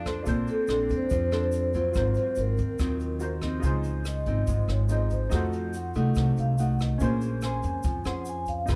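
This short cut from a longer piece has a dark, warm production with light reverb, and its mood is sunny and romantic. It is a bossa nova in 4/4 at 143 BPM with a straight feel, moving through lush chords such as Bbmaj9 and Ab13 before settling into Db major at 3.6 s. The vibraphone carries the melody with soft mallets and a fast motor vibrato, its metallic, ringing tone mellow inside a boxy small room, and from 3.6 s it takes a solo. A sul tasto cello, bowed by one player with a pure, floating sound, adds a second line until 3.4 s. Fingerpicked nylon-string guitar, dark and small in tone, and a clear baby grand piano with short sustain fill out the accompaniment, while a woody, pizzicato upright bass on steel strings sits up front. Airy, polished brushes on a kit with a boomy kick, hi-hat and rim click keep time, and a grainy, bright tube shaker stays in the background.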